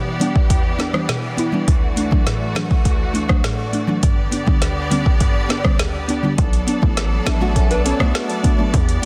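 Up-front afro-pop drums drive this hypnotic, bouncy dancehall excerpt from 0.2 seconds, with a deep kick, woody snare, metallic hi-hats and rim clicks roughened by overdrive and vintage 12-bit sampler grit. Beneath them, a round, dark FM synth pluck with chorus and a lush bowed string section pumping against the sidechain carry the chords from the start. A punchy, saturated 808-style bass arrives at 6.4 seconds, and a small fingerpicked nylon-string guitar adds arpeggios through digital delay from 7.3 seconds, all in a dry, dense, heavily limited modern mix.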